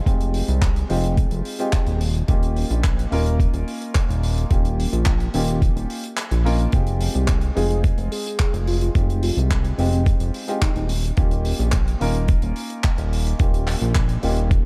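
A gritty, thumpy electronic kick drives this sensual, groovy nu-disco cut from a longer piece. It is overdriven, compressed and up front with a small-room ambience, and it drops out briefly at 6.2 seconds. Beneath it at 108 BPM in a straight 4/4, a fat, thick sawtooth bass with a detuned edge and a filter sweep holds the low end. A dry, mid-forward 70s drum kit adds handclaps and hi-hat. A worn, open grand piano with long sustain plays the Fm7 to Eb7 accompaniment through sidechain pumping, a low-pass filter and analog delay. From 7.6 to 10.8 seconds, a mellow, round synth lead layered with a sub octave surfaces in the background, carrying chorus, vibrato and tape echo, all within a dark, warm production with little reverb.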